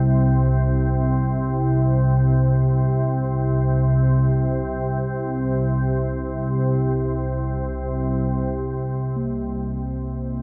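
Heard through a huge, dark ambient reverb that lingers for seconds, this short passage from a longer dark ambient piece feels desolate and ominous as it floats in free time. An organ-like drone sits up front from the start, calm and detuned, its unison voices thickened by ensemble chorus and tinged with ring modulation as it sustains low in the register. At 9.2 seconds a bronze singing bowl enters, its metallic ring struck with a suede striker, slowly beating and meditative within a boxy small room. A deep, moody pad slips in far in the background at 9.7 seconds, warbling and vintage in character with a sub-octave weight beneath its sustained chord. The drone's slow attack and long release leave the closing moments hanging in a murky, brooding haze.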